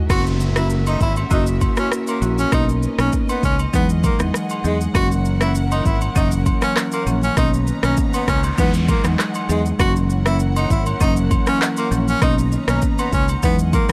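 A small, close room surrounds this breezy, romantic afrobeats excerpt, with an electronic, tape-tinged drum kit and a punchy, fingered electric bass sitting up front. The kit's deep kick, rim click, handclaps and shaker set a straight groove in 4/4, while agogo bells and woodblock add dry, acoustic color in the background. A woody marimba played with medium mallets carries the accompaniment just forward of the middle, and a bright, close-miked tenor saxophone sings the pop-style lead with vibrato. Beneath them, an intimate studio string section holds soft-edged, bowed chords played sul tasto, moving through F#7, Bmaj9 and Emaj9. A very quiet electronic swell, downlifter and noise sweep drift under the opening until 9.8 s, where the passage moves into a new section before the clip cuts off at 13.9 s.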